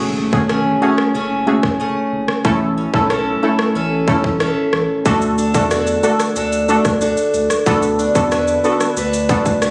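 A punchy, nasal synth brass stab sits up front in this hypnotic, tough dancehall excerpt, its detuned sawtooth tone shaped by a filter pluck, a fast attack and a decaying tail, with chorus adding shimmer. Beside it, a picked acoustic archtop guitar plays boxy, warm arpeggios, also placed up front. Underneath, a saturated sub bass supplies a deep, thick sine-based low end with a quick attack and sustained notes. An electronic island pop drum kit comes in at 0.3 s, its tight kick, rim click and shaker pushed through overdrive and set prominently in the mix, while a very quiet electronic impact sounds from the start until 2.4 s. At a straight 92 BPM in F# minor, the harmony moves from F#madd9 to A, D and Bm7/D, all heard through light reverb with the roomy character of a phone recording.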